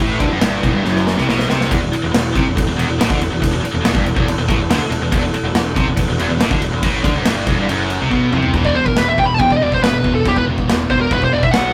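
A straight 4/4 pulse at 140 BPM drives this dark, heavy metal excerpt in E minor, with a big rock drum kit up front, its boomy kick and bright cymbals marked by fills at 0.8 and 8.1 seconds, under a punchy fuzz bass and three distorted guitar riffs: a bright high-gain part, a tight picked one and a very quiet, sludgy double-tracked layer. A moody, detuned analog pad with chorus holds sustained chords in the background until 8.5 seconds, when the harmony shifts to an E5 power chord, and moments later a dark, high-gain lead guitar steps forward with a solo reaching up to B5. The whole thing has the rough feel of a rehearsal room, touched by light reverb.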